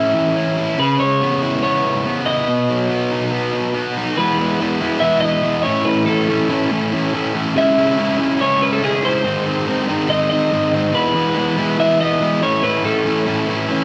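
A double-tracked, compressed fuzz guitar riff sits up front in this wistful, jangly rock excerpt, while a twangy, lo-fi electric guitar through a small old amp carries the melody with tape echo, both bathed in a moderate plate reverb across roughly 13.8 seconds cut from a longer piece.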